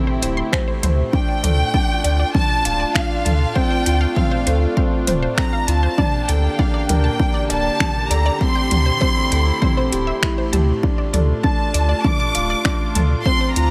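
Light reverb and a studio ambience frame this intimate, cinematic piece of piano and strings electronica, cut from a longer work and moving in a straight 4/4. A felt-muted upright piano carries the riff, soft and mellow with thick felt and audible action noise, its notes trailing through tape echo. A dark chamber string section holds sustained chords with a nasal, reedy gut-string tone that pumps under sidechain compression. In the background, a detuned sawtooth unison pluck plays arpeggios that also pump and echo. Beneath them, a round sine sub bass sits up front, and a punchy overdriven electronic kick enters at 0.5 s over a deep house kit of finger snaps, metallic hi-hats and toms already playing in a small room. From 1.1 s, a warm studio violin section takes the melody high and close, expressive with vibrato and portamento, over chords moving through Dm, F6/D, Gmadd9/D and Am7/D.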